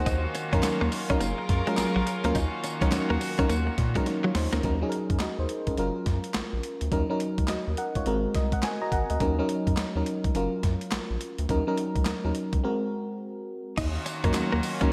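Bouncy and slick, this new jack swing R&B clip at 105 BPM in Eb dorian swings on 16ths over a gritty, pitched-down boom bap sampler-style kit with thumpy kick, high-tuned snare, handclaps, tambourine and gated reverb, a deep, round analog bass, and an up-front, warbling FM electric piano with chorus that takes a fill at 8.1 seconds, while reedy, distant chamber strings and a clean, direct-recorded electric guitar riff with analog chorus, tucked in the background, play until 4.6 seconds and return at 13.8 seconds, the mix glossed with lush hall reverb and bright 1980s-style digital production.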